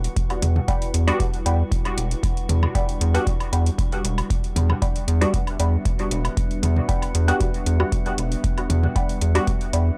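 Dub techno at 116 BPM in E minor, meditative and nocturnal, resting on a single Em7 chord, with a round, up-front analog bass with transformer saturation and a tape-warm deep kick entering at 0.2 s, both set against metallic electronic hi-hats and electronic woodblock and toms carrying dub echo. Two muted, detuned sawtooth dub chord stabs, a higher riff and a lower stab part that adds phaser, pluck through filters with chorus and dub echo. Behind them sit a moody, warbling vintage pad and a glassy texture of drifting overtones, all pumping against the kick in a dry, gritty mix cut from a longer piece.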